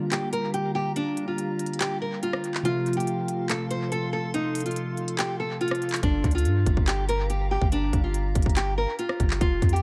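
An echo-heavy, dry mix opens this eerie, brooding trap excerpt at 142 BPM in a half-time G minor feel, where a fingerpicked nylon-string guitar carries the melody up front over detuned, warbling lo-fi synth keys and a faint glassy FM pad, while a crisp trap kit with a hard-clipped kick, handclaps and rim clicks drives underneath until a deep, mellow 808-style bass enters at 6.0 seconds and the keys drop out at 6.1 seconds.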